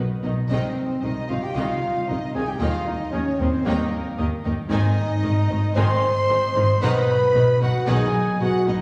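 Triumphant and heroic, this cinematic orchestral passage sets a lush, bowed violin melody from 0.2 seconds over a smooth second violin line, a focused viola section, ringing harp arpeggios and a rich cello and double bass foundation, while a mellow French horn section holds sustained chords, joined from 0.5 to 8.1 seconds by very quiet, dark trombones, with an airy silver flute and a clear clarinet adding background lines, the sound heard from further back in a reverberant scoring stage.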